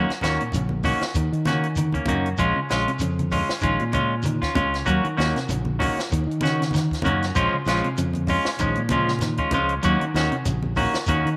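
Defiant and hypnotic, this short afrobeat cut from a longer piece rides a swung sixteenth-note feel as it circles between Ebm7 and Bbm7. A bright, clean semi-hollow guitar sits up front with picked stabs, while a slightly broken-up electric guitar plays picked arpeggios in the background over a round, dark fingered bass that hits with punch. A compact cocktail kit with a high-tuned snare and punchy kick keeps things dry and natural, joined in the background by low-tuned, thick-skinned congas and a grainy, mellow shekere, all set in a wet spring reverb with small room ambience.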